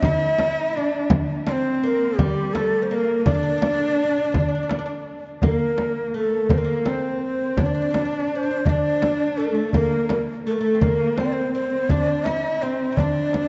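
In a straight 6/8 pulse, this melancholic, longing Arabic maqam piece sets a breathy, hollow ney up front, its vibrato and crisp attack carried on a touch of delay, over a second line shared by a bright, woody fretless oud with doubled strings and a nasal, boxy bowed cello that adds portamento and its own delay. A small, crisp metal-shelled darbuka and a deep frame drum played with hard hands, the latter close and dry, keep the percussion going from start to finish. The dreamy mix is soaked in a long plate reverb, with its top end dulled above 7.8 kHz.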